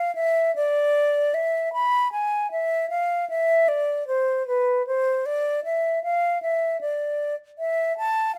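A rubato pulse around 77 BPM in 4/4 gives this serene, flowing classical passage a free, breathing feel, a short section cut from a longer baroque-style fantasia for solo flute. The silver concert flute plays alone from 0.0 to 8.4 seconds, ranging from B4 to B5 with an airy, mellow, straight tone and soft attacks, sitting up front in the mix. Light reverb lends a gentle sense of space around the single line.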